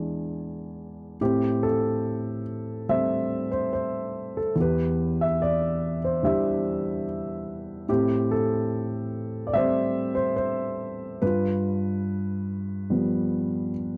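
A dark, mellow grand piano plays alone and up front throughout this brief cut from a longer acoustic folk-pop ballad in A minor, its intimate, vintage tone carrying audible action noise and spanning E2 to E5. At a slow 72 BPM in a straight 4/4, the mood is melancholic and reflective as the harmony moves from E7 into Am7, Em7, back to Am7 and then G7 at 11.2 seconds. The sound is dry and close, with little reverb, in the manner of a 1970s studio recording.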